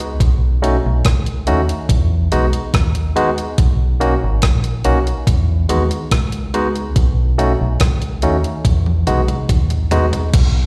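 Sweet and romantic, this short cut from a longer lovers rock reggae piece moves at an unhurried 71 BPM in straight 4/4, heard as a live gig through the venue's PA with the light bloom of a recital hall around it. A dark, round fingered electric bass sits up front alongside a clean 12-bit drum machine whose thumpy kick, rim click, hi-hat, toms and crash carry a sampler-style overdriven grit. From 0.6 seconds a bright, barky tine electric piano, lightly overdriven through a combo amp with plate reverb and slapback echo, moves through B7, Emaj7 and Bmaj7 chords before a drum fill at 8.6 seconds.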